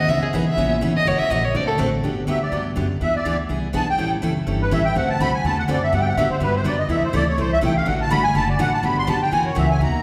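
Bathed in the wet reverb of a church or concert hall, this lively, swinging excerpt of acoustic jazz manouche races along at 247 BPM in G major. A single bowed violin, up front with vibrato and portamento, takes a brief solo until 1.7 seconds, and a reedy, shimmering musette accordion enters at 2.3 seconds to carry the melody. Underneath, a woody, thumpy pizzicato upright bass on gut strings and a bright, full-bodied picked steel-string acoustic guitar drive the swing.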